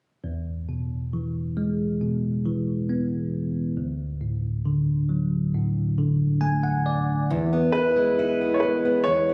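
Captured on a phone in the room and bathed in lush hall reverb, this hopeful, emotional pop ballad at 68 BPM in E mixolydian opens on a barky, bell-like tine electric piano with analog chorus that plays a fill from 6.0 s, before a woody, full-bodied fingerpicked steel-string acoustic guitar enters with arpeggios at 7.3 s and a clear, smooth concert grand piano takes up the melody at 7.7 s.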